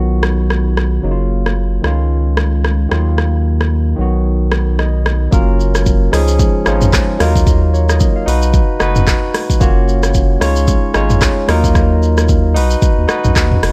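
A loose, swung sixteenth-note groove in four drives this sunny, joyful afrobeats clip, taken from a longer piece. The deep house drum kit sounds electronic and layered, with a deep kick, handclaps, hi-hat, rim click, shaker and toms, re-recorded in a small room and placed up front. A thick, saturated sub bass with a triangle-like tone, fast attack and sustained notes sits low and forward beneath a bright, barky tine electric piano, heard clean through a combo amp, which carries the chords as accompaniment. The harmony cycles through B, F#maj7, C#add9 and D#madd9, giving the music a buoyant, open lift. The kick drops out at 3.2 seconds, the electric piano plays a short fill at 4.5 seconds, and the full groove returns as a new section opens at 5.3 seconds. A digital ambience surrounds the mix.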